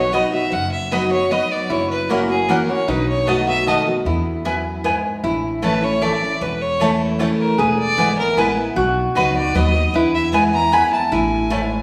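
Lively and joyful, this bluegrass excerpt moves at 153 BPM in a straight 3/4 feel in E major. A clear, focused fiddle with light vibrato carries the bowed melody up front, while a nasal, metallic lap resonator guitar played with slide and fingerpicks adds a mellow second line. A bright, full-bodied picked dreadnought guitar, a thumpy gut-strung upright bass and a double-strung mandolin supplying picked stabs fill out the sound, all set in the wet reverb of a recital hall, with a new section arriving at 5.2 s over A, E and B chords.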